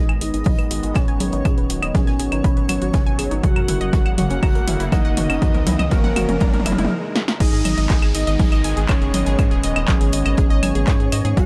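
A dry cut from a longer melodic techno track at 121 BPM in G# minor, dark and hypnotic, where an overdriven electronic kick sits up front beside a punchy analog drum machine of claves, congas, handclaps, toms, snare, hi-hat and crash, a very quiet acoustic kit adds faint hi-hat and snare, a round, deep bass pumps beneath a detuned sawtooth analog pluck arpeggio under a filter sweep through the build-up, a bright, evolving pad holds background chords, a smooth, expressive lead with vibrato carries the melody beneath an airy, dreamy second line, and very quiet risers, swells and downlifters from 3.9 s lead into a brief stop at 6.9 s before the drop at 7.4 s.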